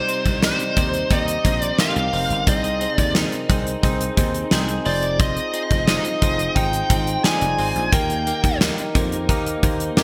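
A bright, glossy 1980s-style pop production with lush hall reverb carries this nostalgic 88 BPM excerpt, where a dark, distorted bluesy lead guitar with digital delay sings the melody up front until 8.6 seconds over a clean tine electric piano, a compressed twelve-string electric guitar riff chiming in the background through ensemble chorus, a fat-snared gated drum kit and a growly, punchy thumbed slap bass, moving through Cm, Ab/C, Fm7 and Eb.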